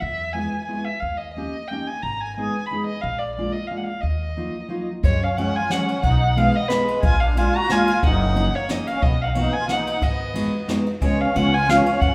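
A lilting, swung three-beat pulse drives this whirling, bittersweet musette waltz, cut from a longer piece, where an up-front bowed violin with a dark, vibrato-laden tone carries the melody over woody pizzicato upright bass and a full-bodied, fingerpicked jumbo steel-string guitar with old strings. At 5.0 s the harmony shifts to F# major as a reedy, shimmering musette accordion with a vintage, band-limited character enters on a second line, joined by a brushed jazz kit with a boomy kick, high-tuned snare and dark ride cymbal. A moderate recital-hall reverb lends the violin a slightly distant air.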